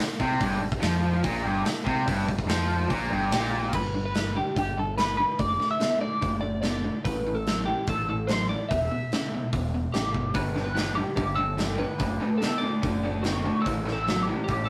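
Classic rock with a swaggering, sunny strut, cut from a longer piece: a big, up-front acoustic drum kit with bright cymbals and a tight kick plays alongside a punchy, growling picked bass and an overdriven electric guitar riffing in the background, while a tight distorted guitar riffs up front until 3.7 s and returns at 10.3 s, and a compressed, slightly broken-up lead guitar with wah carries the melody from 3.3 s, in a rough rehearsal-room recording with moderate ambience.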